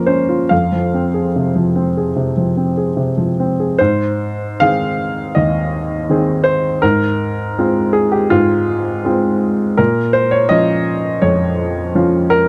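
Rubato 4/4 phrasing, drifting between 68 and 84 BPM, carries this melancholic, wistful neoclassical minimalist piano fragment in F minor, where a solo baby grand with a present, up-front tone spans Eb2 to F5 and moves from Bbm and Fm to Ab at 3.8 seconds, then through Fm/Ab before settling on Bbm at 9.8 seconds, all captured in a dry, close 1970s-style studio sound with a touch of studio reverb.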